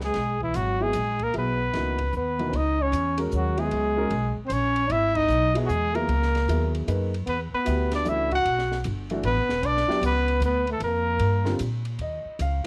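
Searching and spiritual, this modal jazz excerpt moves at 152 BPM in a swung 3/4, centred on C# dorian. A breathy, mellow trumpet carries the melody up front with light vibrato and a punchy attack, while a clear, close-miked trombone shapes a second line with soft attacks and scooped notes. Beneath them, a woody, thumpy pizzicato upright bass anchors the low end, and a compact cocktail kit with a high-tuned snare, punchy kick, ride, hi-hat and crash sits well back in the mix. A dark, vintage upright piano joins the accompaniment at 0.8 seconds, and the band hits a shared accent at 5.1 seconds before the harmony later shifts from Dbm11 to Em11 and eventually to an Eb7sus2. The horns drop out at 11.6 seconds, leaving the rhythm section to carry the passage to its close under a light studio reverb.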